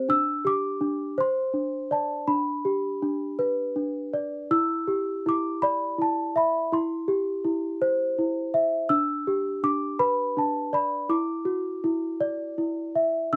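A children's lullaby in G major, this short, sleepy passage moves at a gentle 54 beats per minute in 6/8. A single worn celesta carries it alone from start to finish, its bell-like tone sweet and delicate, softened by felt hammers and slightly out of tune in a way that adds to its innocent charm. The instrument spans from D4 up to E6 and sits up front, caught by close, detailed microphones in a boxy small room with a touch of light reverb. The harmony drifts from Dsus4 through Amadd11 to G, then at 4.5 seconds opens into a second passage that wanders through Em7, C/E and G before coming to rest on Dadd9. Cut from a longer piece, it feels like a fragment of a music box lulling a child toward sleep.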